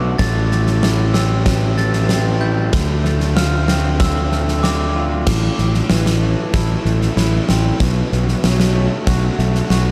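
Post-rock in A minor at 95 BPM, melancholic and cathartic, this short excerpt drifts in a dreamy mix soaked in huge ambient reverb as a twangy, slightly broken-up electric guitar through a small old amp plays arpeggios with harmonic tremolo and diffuse delay, while a dark, bell-like glockenspiel with brass mallets chimes arpeggios in the background until 5.3 seconds. Up front, a round, punchy fuzz bass and a huge arena drum kit with a fat snare, boomy kick and bright crash cymbals drive the progression from Am and Dm7 to B7(no3).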